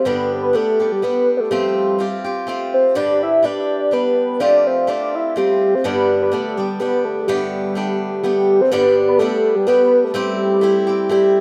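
Close, detailed microphones and a moderate studio reverb give this cheerful, rollicking Celtic folk waltz an intimate, present sound. At 125 BPM in 3/4 with a light swing on the eighths, it sits in G mixolydian and moves between G and Fadd9, later touching Gadd9 before closing on Am7. A velvety synth lead carries the melody up front, its detuned sawtooth core thickened by a sub octave and shaded dark, with chorus, tremolo and tape echo adding motion and trail. Beneath it, a boxy picked acoustic guitar plays swing-style accompaniment, also up front but sitting lower in the balance. Both parts play from start to finish, and the opening section returns at 8.7 seconds before this fragment of a longer piece breaks off at 11.4 seconds.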